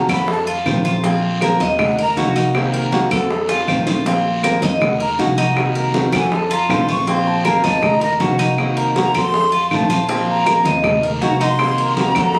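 A breathy jazz flute with vibrato and a soft attack carries the melody of this nostalgic Cuban son and guajira excerpt at 159 BPM, pausing from 2.2 to 4.8 seconds while a drum fill lands at 3.5 seconds. Up front, a full-bodied fingerpicked nylon-string guitar with audible finger squeak and a metallic, double-strung Cuban tres playing arpeggios cycle through F7, Bbsus2, Ebm and Cm7b5, over a dark, thumpy pizzicato upright bass on gut strings. Distant congas with soft hands, tight high-tuned bongos, dry woody claves and a raspy, band-limited guiro fill out the percussion, all set in a moderate large-studio reverb with a compressed, phone-in-the-room quality.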